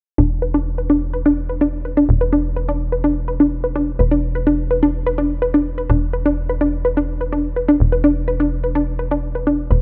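Cinematic and driving, this techno excerpt runs at 126 BPM in a straight 4/4, tuned to A4 = 443 Hz and built on an E5 chord. A lush, detuned unison pluck plays arpeggios from D4 to B4 through cassette tape coloring and analog delay, with a filter sweep running across it from 0.2 to 9.8 seconds, while a tight, punchy sequencer bass holds E1 up front with a fast attack. Light reverb and an echo-heavy mix give the whole fragment a sense of depth.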